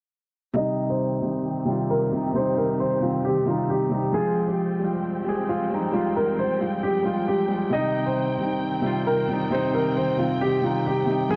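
A dark, low-passed hush on a moderate scoring-stage reverb opens this brooding half-time hip hop excerpt in C minor at 134 BPM, where a soft felt-muted upright piano enters at 0.5 s with intimate accompaniment, a mellow baby grand carries the melody up front, and a lush bowed string section holds expressive vibrato chords beneath a filter sweep over Cm, Fmadd9 and back to Cm.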